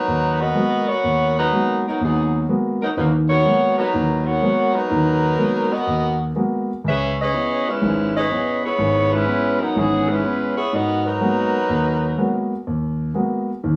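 A mellow saxophone section carries the melody up front, its vintage ensemble sound colored by vibrato and a plate reverb, and it stops at 12.5 seconds. This short jazz passage, cut from a longer piece, has a sultry, brassy mood and a relaxed swing in four. A warm concert grand piano accompanies, also up front, intimate and natural, with deep bass and audible action noise, and it holds on alone until 13.8 seconds. The harmony moves from G#m9 to C#m7 and back to G#m9. A moderate club reverb and small room ambience give the whole ensemble an intimate club atmosphere.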